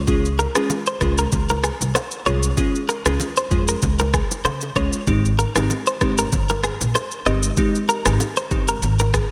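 A bright, compressed clean electric guitar riff, recorded direct with chorus and delay, leads this breezy, romantic afrobeats excerpt over woody pizzicato upright bass, glassy chorused digital keys with a filter sweep, an electronic afro-pop kit with a deep kick, rim click and shaker, and very quiet, close congas and bongos, all set in a lush hall reverb with bright 1980s-style digital production.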